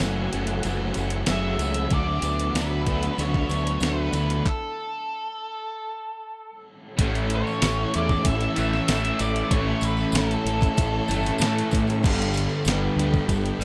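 A lightly reverberant sound opens this dreamy, wistful shoegaze and dream pop excerpt, with a thumpy, fat-snared 12-bit drum machine and a growling, overdriven fingered bass sitting up front, and a jingly tambourine tucked in close. Behind them, two overdriven semi-hollow guitars play riffs, one dark with ensemble chorus and the other warm with reverse reverb. A twangy, slightly broken-up guitar through a small old amp picks very quiet arpeggios, while a silky vintage string machine holds soft, slow-swelling chords with a moving notch. From 1.3 s, an octave-fuzz lead guitar carries the melody with distortion and digital delay, over chords moving from F#m9 to D69 before the band stops at 4.5 s. When the music returns at 7.0 s, a crunchy, double-tracked overdriven guitar joins the riffing as the harmony settles on A and then Gadd9.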